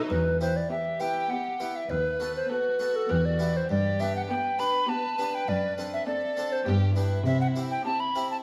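Classical baroque-style concerto movement in a driving, dramatic triple metre, cut from a longer piece, where a hollow, chiffy tenor recorder carries the melody up front with crisp attacks over violin sections playing an expressive melody and a smooth-topped second line, a focused viola section and a brilliant Italian-style harpsichord in accompaniment, and an even, upfront cello section on the bass, all ringing in a reverberant recital hall.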